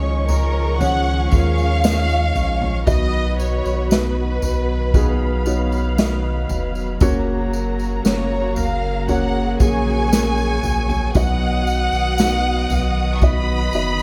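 A slow, straight 4/4 pulse at 58 BPM carries this heartfelt, hopeful pop ballad excerpt, where a distant, roomy unplugged drum kit with a tight kick, medium-tuned snare and toms, played with bundle sticks, enters at 0.3 seconds alongside a jingly, bright tambourine, while a deep, round sub bass sits up front beneath a soft, felt-muted upright piano, an intimate sul tasto string section holding smooth sustained chords, a lush, expressive violin section with vibrato singing the melody, and a dark, woody violin section tracing a second line over chords moving from C#add9 to B, F# and back to B.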